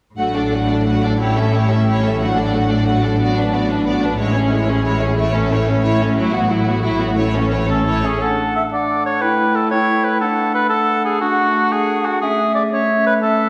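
A heroic, triumphant adventure-film cue in 12/8 at 120 BPM opens with the full strings, a lush, focused violin melody over warm second violins, intense violas and smooth cellos and double basses sustaining A beneath dark, tight French horn chords. An up-front oboe enters at 7.7 seconds, and as the strings fall away at 8.2 seconds a pure-toned flute and clear clarinet join it in carrying the lines over the horns, all set back in a spacious scoring-stage reverb.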